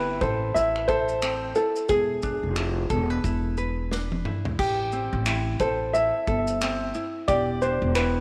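Acoustic pop with a reflective, tender mood and a gently swung feel, this short cut from a longer piece is led by a dark, mellow upright piano carrying the melody up front with a vintage touch of tape echo. Beneath it, a light fingerpicked ukulele supplies accompaniment, while a thumpy pizzicato upright bass on gut strings sits forward with a woody tone and tube saturation. A small-room country drum kit with dark cymbals, a punchy kick, shaker and finger snaps plays a fill from 3.9 to 4.6 seconds before the second section, all set in a moderate echo chamber reverb.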